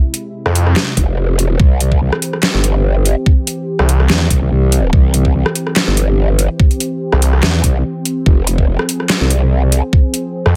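Chaotic and aggressive, this cut from a longer heavy wobble dubstep track pounds along at 144 BPM in a swung half-time feel, moving from F minor to C and back to F minor after a brief break at 7.8 seconds. A lush, detuned sawtooth pad sustains chords through chorus and phaser, pumping under the knocking, tape-warm electronic kick and an overdriven kit of deep snare, metallic hats, handclaps and rim clicks that sounds re-recorded in a small room. Up front, a saturated, formant-filtered growl bass wobbles from 1.0 seconds, while a snarling, distorted, detuned saw bass with a moving notch tears in for short bursts, first at 0.5 seconds.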